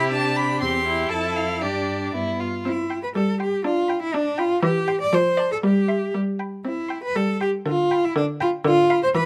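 A focused, close-sounding cello anchors this spirited, cheerful classical-period string quartet passage with a vibrato-laden bass line, while an up-front viola adds expressive portamento to its accompaniment. Above them, a distant, smooth first violin carries the melody and a clear second violin with light vibrato plays an even inner line, all four bowed by single players in a quick 2/4 with a straight feel. Cut from a longer piece, it moves from a brief opening phrase into a longer passage at 2.7 s, captured by close, detailed microphones with light reverb.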